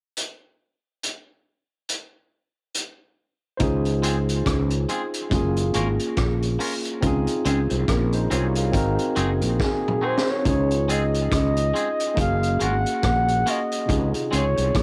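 A slow 70 BPM lovers rock reggae groove in 4/4 with a swung sixteenth feel opens on a crunchy breakbeat drum kit alone, its high-tuned snare, tight kick, rim clicks, hi-hat and toms sounding saturated and gritty through cassette tape with a rolled-off top. At 3.6 seconds the band arrives in Db major, moving through Dbmaj7, Gbmaj7 and Ab7, with a growly, punchy fretless bass sitting up front and a bright, barky tine electric piano comping through a combo amp. A very quiet, slightly broken-up guitar through a small old amp plays a low riff, while a clean, compressed twangy electric guitar adds stabs through analog delay. At 9.6 seconds, as a drum fill leads into the final stretch, a dark, breathy flugelhorn takes the melody with light vibrato, soft attack and a whispered, close-miked intimacy, coloured by tape and delay. The mood is romantic and sweet, with light studio reverb and the homely feel of a cassette recording across this cut from a longer piece.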